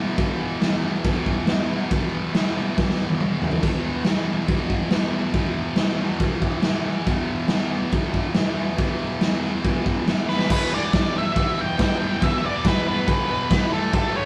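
A thick, bright fuzz guitar opens this menacing, raw garage rock excerpt with a double-tracked picked riff in its low register, joined almost at once by an up-front acoustic drum kit whose punchy kick, medium-tuned snare, toms, crash and splash sound gritty and saturated in a stone room with a rolled-off top, breaking into a fill from 2.8 to 3.6 seconds. At 10.3 seconds a darker octave-fuzz lead guitar enters with a picked melody as the music moves into a new section, riding over the riff until the cut at 14.3 seconds. The whole has the rough, lightly reverberant sound of a rehearsal-room take.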